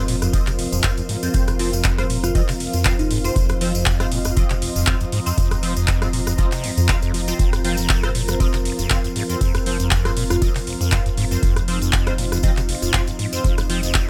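A squelchy, resonant acid bass riff with phaser and overdrive drives this raw, hypnotic acid house excerpt, set over a round, deep analog bass, a deep, tape-warm electronic kick, drum-machine handclaps, metallic hi-hats and rim clicks, a jingly tambourine, nasal band-passed chord stabs with delay, a moody detuned pad and a cloudy granular pad pumping behind it, while a bell-like FM electric piano sparkles briefly in the background at 2.2 and 10.3 seconds, all in a dry room.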